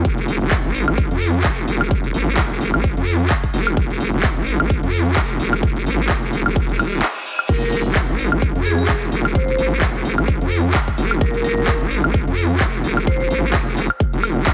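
Dry and heavily compressed with a radio-style sheen, this bass house cut from a longer piece runs at 129 BPM in 4/4 with a swung sixteenth feel, aggressive and bouncy over a rootless Ebsus4. A nasal, wobbling vowel-sweep bass with chorus, overdrive and sidechain pumping sits up front throughout, driven by a punchy, layered electronic kick and a big-room dance kit of crash, handclaps, metallic hi-hats and woodblock. A reverse cymbal rises at 6.8 seconds into a ringing, vintage-toned vibraphone played with hard mallets, which enters at 7.5 seconds in the background through tape echo and stops at 13.3 seconds.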